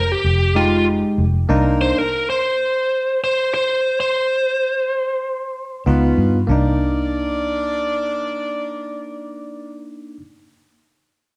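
This soulful, mournful blues opens with a biting, overdriven lead guitar soloing over a dark, round, foam-muted electric bass, and within the first second a punchy horn section with light vibrato and a bright, bell-like tine electric piano join over an Fm9 chord. At 1.5 seconds the band stops, and the picked guitar carries on alone through its overdriven phrases until about 5.8 seconds. The band then returns on a Db7 chord at 5.9 seconds: the amped bass and clean electric piano play on, while the horns hold smooth-topped, octave-doubled sustained chords. The section then settles onto Cm9 as the passage moves into its second part. The swung, sixteenth-note feel and the sound of a band playing live together in one room, bathed in a wet, large studio reverb, give the music an intimate, vintage character.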